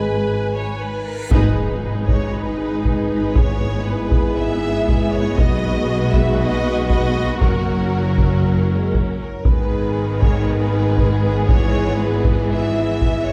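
Dark and epic, this cinematic orchestral excerpt opens with lush, bowed violins carrying the melody over a second violin line, while bright, intense violas and soft-attacked horns holding sustained chords fill the middle, and expressive cellos with clear, distant double basses fill the low end. A huge, dark reverse cymbal rises very quietly into an impact at 1.3 seconds, where close, hard-stick taiko drums enter and drive the rest of the passage. The whole ensemble sits back in a recital-hall reverb as the harmony moves from G#m through E/G#, B6 and F#.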